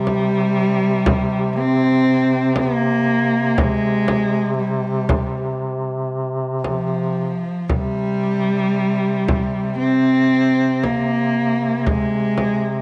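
A dark, woody bowed cello sings a mournful sul tasto melody with vibrato over a mellow duduk drone with soft, scooped notes and a deep frame drum played with hard hands, the cello and drum close and all three up front in a moderate plate reverb, in a slow, rubato Caucasian folk lament of longing at about 57-61 BPM, cut from a longer piece.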